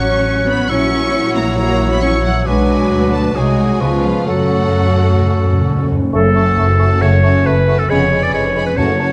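A dramatic, fast romantic orchestral passage in F# minor at 136 BPM opens at once with a lush violin melody over a restless, urgent bed of a bright clarinet line, an airy hollow flute, a second violin line, a mellow bassoon, smooth violas, dark French horn chords and ringing harp arpeggios. Clear, intense cellos and distant double basses carry the bass, with the basses sitting loudest in the mix, while timpani enter with a fill at 4.3 seconds. Dark, roomy trombones join with sustained chords at 6.1 seconds, and the whole ensemble sits in a moderate scoring-stage reverb with flexible, rubato timing.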